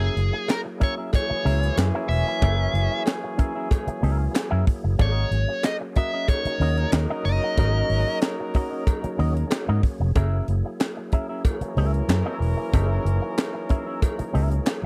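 A nasal, overdriven lead guitar with a parked wah carries the melody up front until 8.2 seconds, over a dark envelope-filtered electric guitar, a percussive tonewheel organ with key click and slow rotary speaker in the background, and a round, foam-muted fingered bass. A tight funk kit with a high-tuned snare and handclaps enters at 0.2 seconds, a distant metallic cowbell at 0.5 seconds, and a roomy horn section with light vibrato joins from 1.1 seconds, in this playful, energetic 93 BPM funk excerpt moving from Gb9 to Ab9sus4 and back, captured as a dry, close 1970s-style studio recording.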